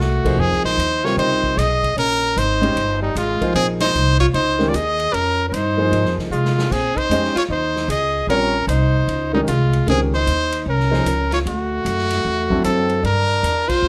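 A brilliant, forceful trumpet leads this cool, searching modal jazz excerpt in Bb dorian, its scooped notes and light vibrato up front, while a clear alto saxophone carries a second line with its own vibrato and scoops. A woody, thumpy pizzicato upright bass on gut strings and a warm grand piano sit beneath, with a distant, roomy big-band drum kit swinging at 152 BPM in the background, its punchy kick and rolled-off top adding a fill around 6.3 seconds. The harmony rests on Bbm11 before turning to D7 at 11.5 seconds and Gm11 at 13.0 seconds, with band accents at 3.8 and 13.6 seconds in a moderate studio reverb.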